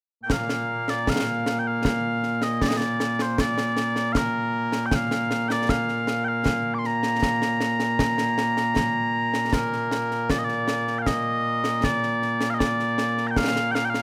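Scottish traditional pipe music in a proud, ceremonial 3/4, with mellow, sweet small bagpipes carrying a continuous solo melody up front from 0.2 seconds while close concert snare and bass drum with dark cymbals join at 0.3 seconds, all heard in a small room on a rough home demo cut from a longer piece.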